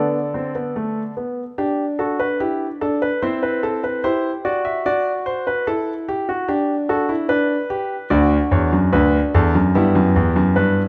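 A moderate recital-hall reverb surrounds a solo concert grand piano that sits up front, with a warm, natural tone and deep bass, in this short passage cut from a longer piece. The joyful, stately baroque-style four-part fugue moves in a straight 4/4 across a range from D2 to E5. From an opening D5, the harmony passes through G over D, A minor seventh, D seventh, back to G and then D before settling on E minor at 9.7 seconds.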